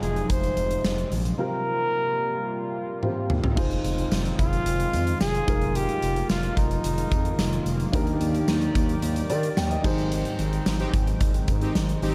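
A dark, lush hall-reverb sound frames this moody, dramatic 1980s-style pop excerpt in F dorian at 110 BPM, where an up-front flugelhorn sings the melody until 7.6 s over natural baby grand piano, a shimmering chorused pulse-width pad, a smooth gliding synth bass with portamento, a huge arena drum kit with a fat snare, punchy kick and bright cymbals, and a jingly tambourine in the background, while a drum fill at 3.0 s leads into the second section and bold, nasal analog synth brass stabs arrive at 10.8 s for the closing band accent.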